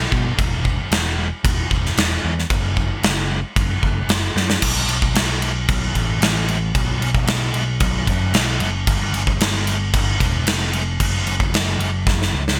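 A straight, driving four-beat pulse carries this heavy hard rock excerpt, set by a gated 1980s drum kit that comes in at 0.1 seconds with a punchy kick, a medium-tuned snare and bright crash cymbal. The kit sits up front in an airy, bright stone room, its gated ambience giving each hit a polished snap. Beneath it, an overdriven picked electric bass growls through the low register from the very start, its amped tone warm and gritty. A drum fill at 4.4 seconds leads into a new section, and another fill closes the passage from 12.1 seconds. The whole mix carries a light reverb and a bright digital sheen typical of 1980s production.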